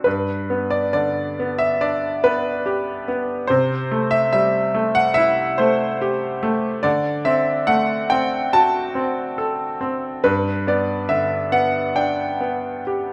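Rubato phrasing stretches a 71 BPM pulse in 4/4 through this brief, lyrical classical passage in G major, cut from a longer piece and lasting about 13 seconds. A solo concert grand piano carries the whole calm, warm mood: its sound is bright and worn, with deep bass, spanning G2 to A5 and placed up front. The harmony moves from G through C6 and D7 before settling back on G at 10.2 seconds, framed by a moderate recital hall reverb.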